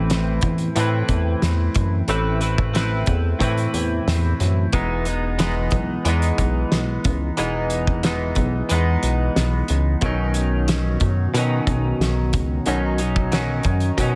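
A light reverb and small-room ambience frame this short, nostalgic cut of laid-back indie and bedroom pop, moving at an easy 91 BPM in a straight 4/4 in E major. A clean electric guitar, recorded direct and compressed, carries the accompaniment up front with a bright, twangy picked tone, its analog chorus adding a warbly pitch drift. Underneath, a glossy, retro synth bass blends pulse-wave and sawtooth colours with ring modulation and a fast-attack filter pluck that settles into a mellow, sustained, chorused body. A loose acoustic drum kit sits close in a pumping studio room, pairing a punchy kick and fat snare with hi-hat under a rolled-off top. The harmony drifts from Amadd9 to Emaj7 at 4.7 seconds and on to Badd9 at 10.0 seconds, giving the brief passage a nostalgic glow.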